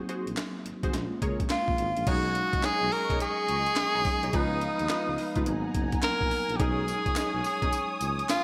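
A mellow tine electric piano opens this confident, slick new jack swing excerpt at 106 BPM with a swung 16th-note feel, joined almost at once by a punchy, detuned polysynth comp with chorus, a gritty, compressed breakbeat sampler-style kit of thumpy kick, high-tuned snare, hi-hat, handclaps, tambourine and crash bathed in gated reverb, and a tuba bass with vibrato, before a bright tenor saxophone with scooped notes and digital delay takes the up-front solo melody at 1.5 seconds and a veiled, con sordino string section adds lush bowed chords from 2.1 seconds, all within a shiny 1980s-style digital production and hall reverb.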